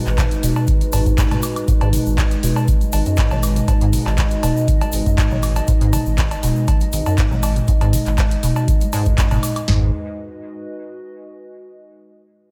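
A straight 4/4 groove from a booming analog drum machine, with its deep kick, crisp snare and toms, joins a second tape-toned kit of metallic hi-hats, cowbell, handclaps, toms and woodblock and a grainy egg shaker in the background to drive this trippy, hypnotic acid house excerpt, where a squelchy, resonant square-wave acid bass riff runs through a filter sweep over a thick, saturated sine sub bass, a moody, detuned analog pad holds shadowy sustained chords through chorus and phaser, the pads and basses pump to the sidechain, and a lo-fi, ring-modulated, warbling tape-like pad lingers alone from about 9.9 s until 11.6 s.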